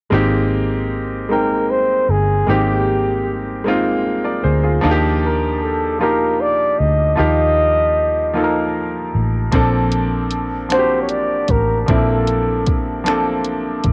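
A breathy, mellow flugelhorn carries the melody up front from 1.3 seconds, its jazz-style phrasing marked by light vibrato and scooped notes, over a clear grand piano with a cassette-tape tint and a round, foam-muted fingered electric bass. This tender, slow six-eight R&B excerpt moves through lush major-ninth chords in a snug booth, a home recording on cassette. At 9.5 seconds a soft, produced drum kit slips in with finger snaps, dark hi-hats and a gentle kick.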